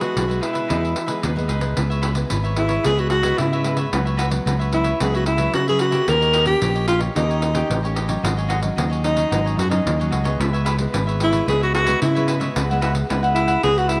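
A jingly pandeiro drives a straight 4/4 samba and choro groove at 111 BPM in C# minor, playful and sunny, with the saxophone, cavaquinho and guitar all sounding from the first moment, joined at 0.2 s by an up-front fingered electric bass. Over it a breathy, close-miked alto saxophone carries the melody with vibrato, subtone and scooped notes, while a crisp, picked cavaquinho and a woody, fingerpicked nylon-string guitar in the background fill out the accompaniment. A moderate plate reverb lends space to this short cut from a longer piece, whose harmony moves from Emaj7 through C#m7 and D#7 to G#7sus4.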